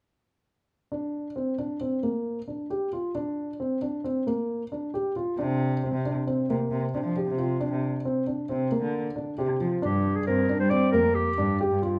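A clear, vintage-toned clarinet carries the melody in a brief classical-style solo that arrives at 9.8 s, near the close of this restless, pensive fragment of contemporary chamber music cut from a longer piece. Before it, a dark, mellow baby grand piano opens at 0.9 s with intimate arpeggios over a rootless G minor chord, its natural sound up front and marked by audible action noise. At 5.4 s a single bowed cello joins on the bass line as the harmony moves to Csus2, its gut-string, period-style tone reedy and shaded with light vibrato. The clarinet's entrance brings the harmony back to G minor, and all three instruments sit close in a moderate recital hall reverb. The music moves in an uneven 5/4 metre with a straight feel.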